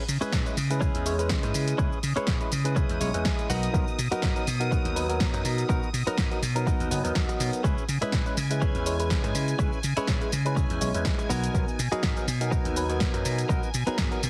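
A swung 16th-note groove at 123 BPM in 4/4 drives this short cut of sensual, nostalgic filtered disco house in C# dorian, built on a punchy electronic kick and an analog drum machine's hi-hat, shaker and snare, both re-recorded in a small room, with a warm, amped slap bass pumping beneath and the chords moving between C#m7 and Bmaj7. A twangy, picked clean electric guitar riff, recorded direct, runs throughout and breaks into a brief fill from 2.8 to 3.7 seconds, while a barky tine electric piano adds phased accompaniment and a swirling, warbling string machine holds chorused chords in the background. Sidechain pumping runs through the guitar, bass, electric piano, strings and drum machine, and the whole mix carries a heavily compressed, radio-like sheen.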